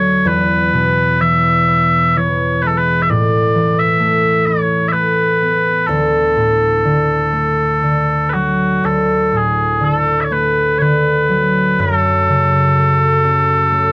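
In a loose, rubato 3/4 around 60-67 BPM, this nostalgic, wistful Celtic slow air drifts forward with the mellow, sweet tone of small bagpipes carrying a continuous solo melody up front, tuned to A4 = 445 Hz. Beneath it, a fingerpicked concert harp rings out in the lower register, shading the harmony through E, Asus2, D and finally F#m at 11.8 seconds. The dry, close 1970s-style studio sound, touched with light reverb, keeps both instruments intimate in this short passage cut from a longer piece.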